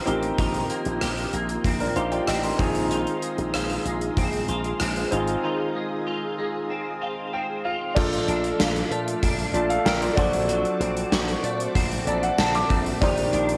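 A clear grand piano, a dark sawtooth string-machine cello pad with ensemble chorus in the background, and a twangy, compressed twelve-string electric guitar riff with chorus and tape echo open this nostalgic, romantic 1980s-style pop cut in Bb major at 95 BPM. A growly slap bass run through an envelope filter and an up-front gated drum kit, with bright cymbals, a tight kick, rim clicks and tambourine, join almost at once. The piano, with audible action noise and long sustain, adds fills around 1.6 seconds and 11.8 seconds, and a break arrives at 5.4 seconds. The whole cassette home recording sits in a small room and has a soft tape haze.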